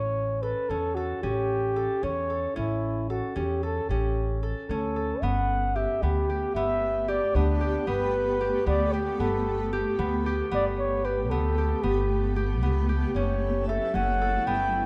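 A breathy, whispered flugelhorn carries the melody up front in this restless, shimmering excerpt of contemporary chamber music in 5/8 at 227 BPM (eighths), over ringing, fingerpicked concert harp arpeggios and a woody, thumpy pizzicato upright bass, while a cloudy granular pad with tremolo and built-in reverb drifts in at 6.3 s as the harmony moves from A7 to Gadd9 and F#m7 within a dark production with light reverb.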